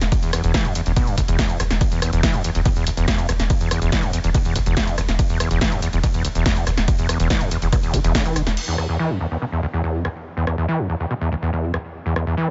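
Driving peak-time techno with a dark mood, this excerpt opens on a drop where a deep, saturated sub bass pumps beneath a punchy, tape-tinged electronic kick and an analog drum machine of snare, hi-hat, rim click, shaker, ride and crash cymbals, all set in a digital ambience with a dulled top end. Up front, a squelchy, gritty acid bass riff with resonant sawtooth plucks carries distortion, analog chorus, digital delay and sidechain pumping throughout. At 8.6 seconds the sub bass drops out, the kick having already stopped at 8.2 seconds, leaving the drum machine and acid riff to carry the closing section on an E5 power chord.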